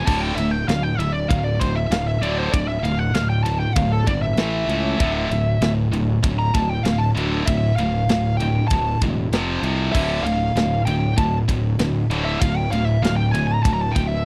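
A straight 4/4 groove drives this dark, heavy metal excerpt from a longer piece. A tight, up-front acoustic drum kit plays kick, snare, ride and crash with a warm, rolled-off top, while a growly fuzz bass pushes forward beneath two bright, high-gain distorted rhythm guitars sitting further back on a riff over D5, A5 and F5 before settling on Dm at 9.9 seconds. Across the whole passage, a smooth, overdriven lead guitar solos up front with slapback echo, all captured in a dry, close studio sound with a 1970s feel.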